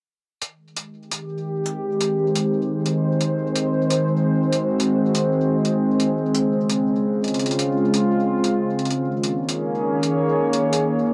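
A gritty, pitched-up electronic hi-hat opens this glitchy, wistful IDM excerpt at 0.4 s, compressed and re-recorded in a small room with a 56% swing on 16ths at 86 BPM, before a warbling, nostalgic, up-front tape-like pad of detuned sawtooth and triangle tones enters at 1.2 s, holding mellow chords with slow attack and long release through chorus, built-in reverb and cassette haze over an Ab major progression of Abmaj7, Ab7, Dbmaj7 and Eb7sus4, tuned to A4 = 443 Hz and set in a wet studio reverb on a home cassette recording.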